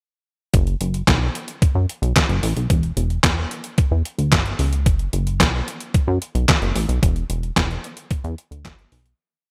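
Early-eighties boogie funk in F# phrygian at 111 BPM, this slick, late-night piece pairs a plucky, punchy analog bass of sawtooth, square and triangle tones with ring modulation and a fast-attack filter pluck, playing a syncopated boogie line full of muted ghost notes and slides, with a detuned, overdriven 8-bit drum machine whose thumpy kick, fat snare layered with handclaps, hi-hat and gated reverb drive a four-on-the-floor beat, both up front in a bright 1980s-style digital production with light reverb, before a fade-out from 7.0 seconds.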